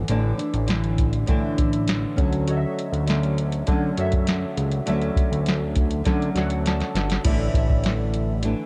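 A fingerpicked nylon-string guitar with a full-bodied, classical tone and a fat, detuned analog bass open this dreamy, laid-back bedroom-pop excerpt together at 0.0 seconds, the guitar coated in a lush chorus and vibrato. A soft vintage rhythm box joins almost at once, and both bass and drums sit up front, the drums bringing a deep kick, tonal snare, metallic hats and the occasional crash. At 2.5 seconds, warbly lo-fi synth keys drift in high above, mellow and nostalgic with a decaying, chorused shimmer. The harmony moves from a suspended Asus4 into a long, hazy Dmaj7, then returns to Asus4 as the short closing section begins. Drums and synth keys both add fills starting at 6.1 seconds, and the whole piece sits in a dark, softly reverberant production.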